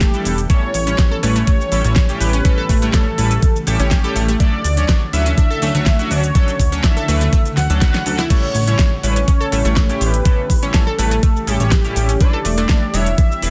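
Uplifting and expansive, this progressive house passage moves at 123 BPM in a straight 4/4, set in A mixolydian and cut from a longer piece. A knocking electronic kick sits up front with studio reverb, joined by a pop drum kit of fat snare, crisp hats, cabasa and crash, whose hats, cymbals and percussion carry sidechain pumping, with a drum fill at 7.6 seconds. Beneath them a punchy, funky analog bass with a plucky filter and fast decay pumps in the low register, while a glossy, retro chorused polysynth plays stabs with tape echo and pumping. An analog pluck adds round, warbling arpeggios, detuned and chorused, that drop out at 12.7 seconds, and a very quiet, ethereal pad shimmers underneath with granular, phased sustained chords. On top, a thick, bold unison lead carries the melody with vibrato, tape echo and sidechain pumping, over chords moving from A7 to Dmaj7, back to A7 and onto Em7, all sealed in a dense, heavily limited modern master.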